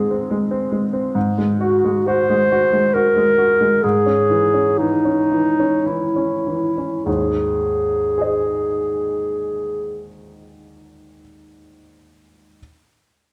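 Romantic classical music for clarinet and baby grand piano in Ab major and 3/4, lyrical and tender, moves with rubato between 47 and 72 BPM and slows over its first 7.1 seconds, as the mellow, soft-attacked clarinet sings the melody up front until 10.1 seconds over the clear, short-sustained piano accompaniment, which rings on alone until 12.6 seconds through the Ab, Ab7 and Dbm/Ab harmonies in a moderate recital-hall reverb, in this brief cut from a longer piece.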